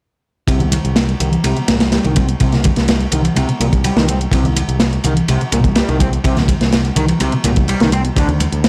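A straight 125 BPM breakbeat groove in C minor drives this gritty, energetic breaks excerpt: the crunchy, saturated drum kit with its tight kick, medium-tuned snare and dark ride sits up front beside bright electronic hi-hats and very quiet, high-tuned congas, while a punchy, picked electric bass holds between C2 and D2 under a double-tracked fuzz guitar riff whose filter sweeps through the whole dry, hardware-recorded passage from 0.5 to 8.7 seconds.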